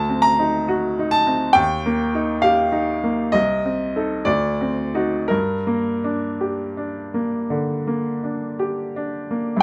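Close, detailed and lightly reverberant, this brief excerpt from a longer romantic nocturne features a bright, brilliant baby grand piano, open and up front, playing alone in G minor at a rubato 54-70 BPM in 4/4, its melancholic, mournful harmony moving from D7b9 through Eb and a diminished chord back to D7b9 before settling on G minor at 5.3 seconds, across a range from C2 to Bb5.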